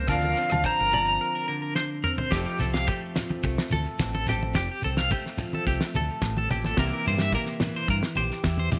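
A twangy, compressed electric guitar comping with subtle chorus and a second clean guitar picking arpeggios through tremolo and tape echo open this carefree highlife excerpt over a round, punchy fingered bass, while a breathy, reedy flute with vibrato sings a brief solo that ends at 1.5 seconds, agogo bells ring faintly at the start, and a dry, up-front drum kit with a fat snare, a distant grainy shekere and hard-handed, low-tuned congas carry on through a drum fill into the new section at 2.3 seconds, the band set in a light small-room reverb.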